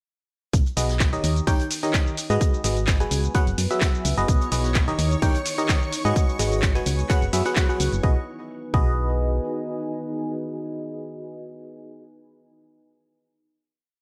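A biting, barking FM electric piano leads this joyful, euphoric piano house piece at 128 BPM in B major, punching out close-voiced dotted-rhythm chords through chorus, phaser, tremolo and tape echo over a punchy tape-warm four-on-the-floor kick, a round, dark FM bass riff, analog drum-machine claps, hats and shaker, and a very quiet, distant brushed breakbeat, all lightly swung. A deep, moody detuned pad drifts in at 1.4 seconds and a shimmering vintage string machine holds a high note in the background from 4.3 seconds, as the groove cycles through B6, D#7, G#m7 and F#9sus4 before settling on a final B6 chord at 8.0 seconds that rings out to 11.8 seconds.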